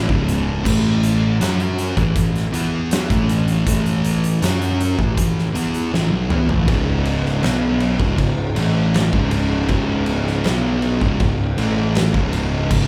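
Two thick fuzz guitars open a heavy, ominous stoner and doom metal riff in C# minor at a straight 80 BPM, one dark and up front, the other warm and set back, over a punchy, overdriven fuzz bass and an oversized, low-tuned acoustic kit with a boomy kick, fat snare, dark cymbals and a gritty, pumping room sound, all played live together in a large studio with moderate reverb, with a drum fill at 5.9 seconds leading into a C#m passage at 6.7 seconds in this excerpt cut from a longer piece.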